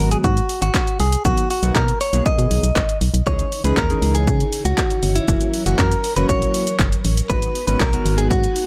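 A clean, direct-recorded electric guitar carries the melody up front with dub echo over an energetic, bittersweet dance-pop groove in G# minor at 119 BPM. Beneath it sit a punchy, tape-warm analog drum machine with kick, snare, handclaps, hi-hat and shaker, a hollow, dark FM bass and a glossy, full-bodied chorused polysynth, both with sidechain pumping, while a mellow, vintage organ-string ensemble joins in the background at 3.3 s as the chords move from G#m7 through Bmaj7, C#madd9 and F#7.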